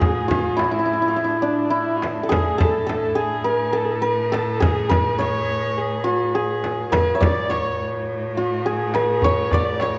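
A shimmering, ringing hammered santur leads up front from the start of this festive Persian modal piece in A chahargah, set in a straight 4/4 at 104 BPM, with an intimate bowed kamancheh close behind it carrying a second line with light vibrato, soft attacks, portamento and an airy bow. Beneath them a single bowed cello holds a rich, focused A2 drone with vibrato, while a close, dry frame drum struck with hard hands and a deep, vintage-toned, band-limited tombak in the background keep the rhythm. The whole ensemble sits in a moderate recital hall reverb, and this short cut from a longer piece has a warm, celebratory glow.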